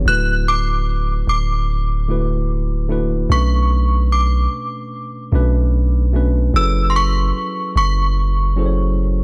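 A worn, slightly out-of-tune tine electric piano and a deep, sine-toned 808-style bass open this sensual, late-night contemporary R&B excerpt at 0.0 seconds. A chiming FM synth takes the melody at 0.1 seconds, high in its register, with a ringing, inharmonic, vintage tone that warbles through ensemble chorus, tremolo and tape echo before its long release. The bass sits up front with a fast attack and long, mellow decay, while the electric piano stays clean and direct in the accompaniment. The tempo is an unhurried 74 BPM in 4/4 with a light 16th-note swing, tuned to A4 = 441 Hz, and the harmony moves from D69 to Bm7 at 3.3 seconds and F#m11 at 6.5 seconds. Digital ambience surrounds a dry, gritty recording.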